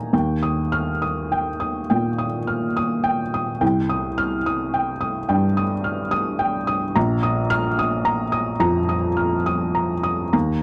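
A felt-muted upright piano plays alone throughout this short cut from a longer neoclassical minimalist piece, its tone soft and mellow, with the mechanism's action noise audible up front. The mood is hopeful and tender, moving at around 70 BPM in 4/4, though the beats fall unevenly and the time stretches freely in rubato. Across roughly 10.6 seconds the harmony moves from Eb to Cm at 3.6 seconds and settles on Bbsus4 at 7.0 seconds. The piano spans a broad range, from Bb1 in the bass up to F6. The sound is dry and close, with little reverb, giving an intimate, natural 1970s-style studio character.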